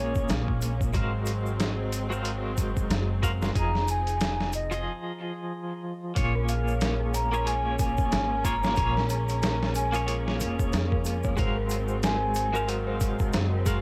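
Trip hop at 92 BPM in Bb minor with a swung 16th feel, dark and cinematic, cut from a longer piece and recorded on cassette in a light, homespun room. A gritty, overdriven sampler-style drum kit with thumpy kick sits up front beside woody pizzicato upright bass, while a saturated egg shaker hovers in the background and smooth bowed strings hold sustained chords behind a twangy, clean electric guitar with tremolo and tape echo. A distant, hollow baroque flute carries the melody with vibrato, 12-bit sampler grit and dub echo, and after a break at 4.9 seconds an eerie, inharmonic FM synth bell adds detuned arpeggios from 6.2 seconds.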